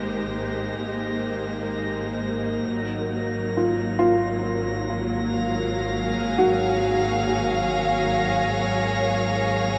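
Floating in free time, this weightless, serene ambient excerpt sets a lush, bowed string section holding sustained chords with shimmer reverb over a smooth double bass section on a low Ab1, while a glassy, drifting glass-harmonics texture hovers high above, and at 3.6 seconds a soft, felt-muted upright piano enters with intimate arpeggios touched by delay, all moving from Abmaj9 to Gbmaj9/Ab in a dreamy mix soaked in huge reverb with a cassette tape character.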